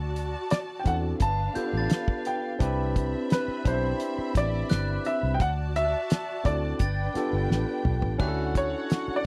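Warm and romantic, this lush 1970s-style soul excerpt at 86 BPM in D major pairs a worn baby grand piano melody with slapback echo and a bright, barky tine electric piano, over a round, foam-muted electric bass and a cloth-damped, thuddy drum kit with a fat snare and dark cymbals, while a dark, woody string section bowed sul tasto with vibrato adds a second line and a faint, bell-like glockenspiel rings in the background from 1.6 s, all captured in a dry, close studio sound, until a drum fill at 7.5 s leads into a brief grand piano solo at 8.2 s.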